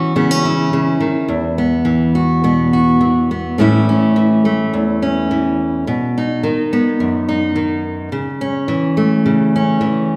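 In a straight 4/4, a lone fingerpicked steel-string acoustic guitar carries this nostalgic, pastoral folk excerpt, moving from C#madd9 to Esus2 before a second passage opens at 3.6 seconds on A, then B and A/C#. The guitar sounds full-bodied and up front, spanning E2 to F#4, while a generous recital-hall reverb with a 1.7-second decay wraps it in an auditorium glow.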